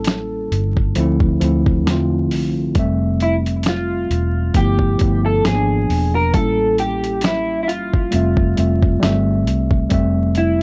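A dusty, sampler-style soul drum kit stands out most, its thumpy kick, fat snare, hi-hat and finger snaps pushed up front with gritty overdrive in this nostalgic, dreamy lo-fi hip hop piece, cut from a longer track at a relaxed 67 BPM in 4/4 with a gentle swing on the 16ths. A worn, slightly out-of-tune tine electric piano carries the accompaniment in F major, mellow and direct, its tone softened by a low-pass filter. Over it, a dark, slightly broken-up electric guitar played through a small old amp picks a lo-fi melody, colored by analog chorus, delay and filtering. A round, foam-muted fingered bass anchors the low end with a dark, amped tone. The harmony drifts through jazzy colors like Dm9, Fmaj9, G13 and A7b9, and all four parts play together for the full 10.6 seconds, set in light reverb within a dry, hardware-recorded sound dusted with vinyl crackle.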